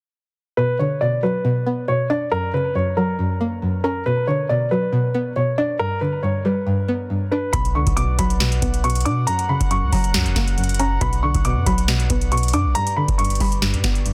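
Hip hop and trap excerpt at 138 BPM in a half-time feel, dark and menacing in B harmonic minor, cycling through Bm, F# and G as a dark, intimate baby grand piano with audible action noise carries the melody through tape echo over a twangy, string-like resonator pluck with a filter sweep and chorus. At 7.5 seconds the beat drops in: a booming analog drum machine with a deep kick, crisp snare and metallic hats, a long, sine-like 808-style bass, and a distant, roomy brass ensemble with light vibrato holding soft chords beneath. The mix is dry, dense and heavily limited, keeping the piano, pluck and drums up front.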